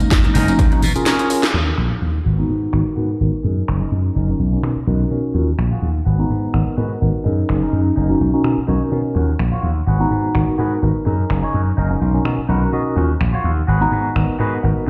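Filtered disco house with a sensual, nostalgic mood, swung lightly on the sixteenths and cut from a longer piece. A tine electric piano runs throughout, up front and clean with medium tremolo, phaser and a combo-amp color, pumping against the beat under a low-pass filter, while a glassy slap bass, bright and punchy with tube saturation, carries the low end through the same pumping and filtering. The house drum kit brings finger snaps, a cracking snare and bright, overdriven hats in a small room, and a tape-warm analog kick sounds only from 0.1 to 0.7 seconds. Ringing congas and tambourine sit close and dry in the background until 1.5 seconds, just after a drum fill and a band accent at 1.4 seconds lead into the longer second section, where a filter sweep carries on to the end. A twangy, picked clean electric guitar plays a riff with vintage 12-bit sampler grit, adding a fill from 12.3 to 13.0 seconds, all set in a large studio reverb as if heard on a big sound system in a bare room.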